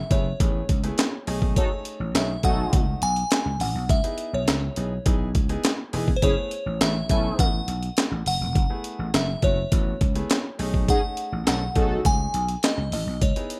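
The groove rides a straight 4/4 at 103 BPM, driven by an up-front, sampler-style breakbeat kit with a thumpy kick, high-tuned snare, hi-hat and handclaps, compressed and gritty with a tape-warm grain from being re-recorded in a large room. Underneath, a vintage slap bass sits just as close, electric, growly and punchy, holding down this early-eighties boogie funk cut in F# dorian with a slick, late-night mood. A delicate FM tine bell carries the melody from the very start, tinkling with a fast attack and a decaying tail, dressed in chorus, phaser, slapback echo and plate reverb, while a brilliant grand piano accompanies quietly behind it. From 1.6 s to 12.0 s a mellow, detuned sawtooth synth brass adds a round, evolving second line with a filter sweep and vibrato, its tone brassy yet dark under chorus, phaser and plate reverb. The harmony moves through F#m11, B13 and C#m9 before returning to F#m11 and B13, all within a lightly reverberant, rough home-demo mix cut from a longer piece.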